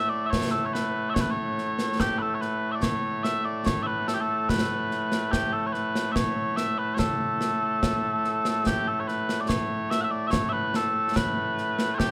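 In a straight 2/4 metre, this stirring, ceremonial Scottish pipe tune opens with small bagpipes carrying the melody, sweet and continuous with a gentle vibrato, sitting up front in a solo role. Concert snare drum and concert bass drum join at 0.3 seconds, acoustic and close in a live room, their dark cymbals adding weight beneath the pipes. Light reverb and detailed close miking frame this short cut from a longer piece, where the opening strain is played through and begins again at 8.7 seconds.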